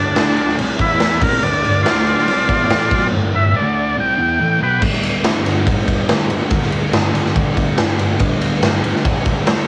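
Raw and rowdy, this is a short cut of garage rock from a longer piece, moving at 142 BPM in a straight 4/4 in G mixolydian with a home-cassette, small-room feel and light reverb. An overdriven, buzzy combo organ with heavy vibrato carries the melody up front until 4.8 seconds, while a dark, double-tracked fuzz guitar picks a thick riff throughout. A raw acoustic drum kit with a punchy kick, medium-tuned snare, crash and ride cymbals pumps in a bright stone room, sounding gritty and saturated from 0.2 seconds on.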